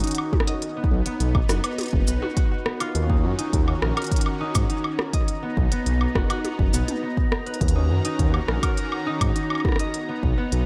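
A dark, detuned saw bass rumbles up front beneath fingerpicked concert harp arpeggios roughened by vintage 12-bit sampler grit and digital delay, while a deep electronic kick, an organic electronic kit of smooth hats, rim clicks, shakers, toms and woodblock, a chorused analog pad sustaining Ebm7 and Bmaj7 chords, and a bubbling stepped-filter texture entering at 3.0 seconds in the background shape this intricate, glitchy IDM excerpt in Eb minor at 103 BPM.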